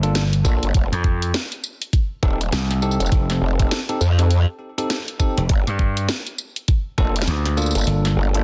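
Glitch hop at 101 BPM in 4/4 with a swung sixteenth feel, gritty and playful, cut from a longer piece and moving from Gm7 to F7 and back to Gm7. An overdriven, punchy slap bass opens alongside a produced kit with a cracking snare, hi-hat and tambourine in studio reverb, and at 0.4 s a growling, wobbling formant-filtered bass with chorus and a knocking electronic kick join up front, the kick falling away by 7.1 s. Bright, bell-like tine electric piano stabs with sidechain pumping and delay sit further back in the mix, all within a dense, heavily limited modern master and digital ambience.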